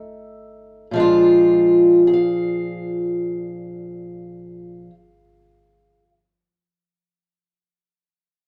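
A fingerpicked steel-string acoustic guitar opens on an F7 chord, setting a soulful, gritty acoustic country blues mood in this short passage cut from a longer piece. The pace is slow, at 52 beats per minute in a straight 12/8, and the music sits in Bb mixolydian, shifting to Bb7 at 0.9 seconds. The parlour guitar carries everything alone, its dark, boxy tone placed up front and ranging from F2 to F5. It plays from the start to 6.1 seconds, with its main section spanning 0.9 to 5.6 seconds. A live-room ambience with a short, wet reverb surrounds the instrument, and a faint mains hum sits beneath it, adding a raw, unpolished character.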